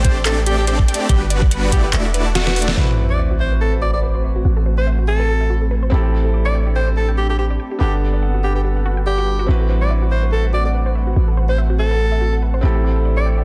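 Emotional, lush future bass excerpt at 143 BPM in A dorian with a swung, half-time feel, where a clear, close-miked alto saxophone carries a jazz-style melody with light vibrato and tape echo over a deep, boomy 808-style bass and a punchy unison pluck arpeggio. A knocking kick drops out at 1.8 s, and the opening drop of huge, bright supersaw chords, an airy dreamy lead and a dubstep kit with deep snare and metallic hats all stop at 2.8 s. At that point a soft felt-muted upright piano with 12-bit grit and audible action noise enters alongside a very quiet sub drop, and an ethereal, warbling pad under a filter sweep joins at 3.5 s, all within a dense, heavily limited master.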